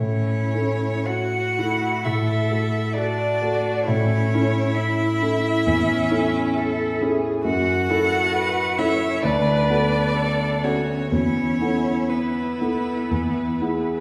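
A polished, present grand piano sits up front as a rich, bowed violin with light vibrato carries a tender melody and a smooth cello sings a second line beneath it, while a clear, focused viola fills in the accompaniment, the strings heard at a distance. This slow romantic movement for piano quartet in A major moves at 53-68 BPM in 4/4 with flexible rubato, its harmony passing from A through F#m7 and Bm7/D to Esus4 at 11.1 seconds before settling on E at 13.1 seconds. A recital hall reverb wraps the ensemble in this 14-second passage cut from a longer piece.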